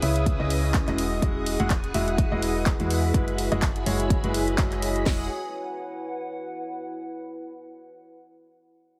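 Swung 16ths at 125 BPM in 4/4 drive this feel-good, uplifting piano house clip in E major, where a punchy house drum kit with cracking snare and metallic hats joins at 0.3 s over a dry analog drum machine's handclaps and hi-hat, while a round, dark FM bass, a clear, worn grand piano riff with delay and low-pass filtering, shimmering string-machine violins under a filter sweep, and a warbling, nostalgic tape-like pad that lingers to 6.9 s share sidechain pumping across Emaj9 and F#9sus4 chords, heard through a heavily compressed radio sound with light reverb.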